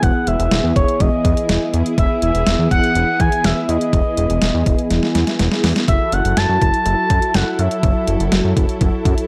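A straight, upbeat 4/4 pulse comes from an overdriven, detuned 8-bit drum machine with a thumpy kick and a medium-tuned snare, sitting up front beside a fat, thick analog bass. A drum fill runs from 4.9 to 5.9 seconds, and at its close the harmony moves from Emaj7 to F#m7. Over this, a smooth, expressive sawtooth lead with chorus, vibrato and analog delay carries the melody until 8.3 seconds. Round, brassy synth brass with ring modulation accompanies it, while a silky, vintage string machine with ensemble chorus holds sustained chords in the background. It is all set in a bright synth-pop cut with a dark production tone and light digital reverb.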